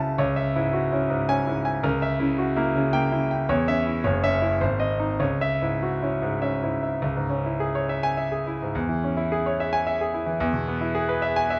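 A bright concert grand piano opens this passionate, agitated classical piece, a virtuoso study heard here as a short cut from a longer work. Playing alone for its full 11.6 seconds in a three-beat metre, the piano moves with a free, rubato feel, ranging from deep bass notes up into its brilliant upper register. The harmony stays dark and restless, passing through a diminished chord and a bare fifth before returning home to its minor centre. At 7.0 seconds the music moves into a new section that closes on a major chord. Close, detailed microphones place the polished piano up front with short sustain, framed by a moderate recital hall reverb.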